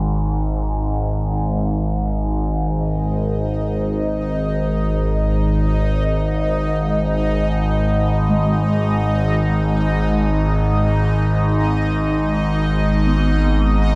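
Dark ambient drone in free time, unsettling and dark, cut from a longer piece and bathed in a huge, wet reverb with a dark, warm production. An up-front sawtooth-and-sine drone with moving, sweeping overtones holds the low register from the start, treated with chorus, reverb and phaser. A bright, bubbling texture of random resonant filter steps enters at 2.9 seconds, and at 8.3 seconds a mellow gamelan-type bronze metallophone, struck with padded disc mallets, adds soft, shimmering arpeggios in the background through delay.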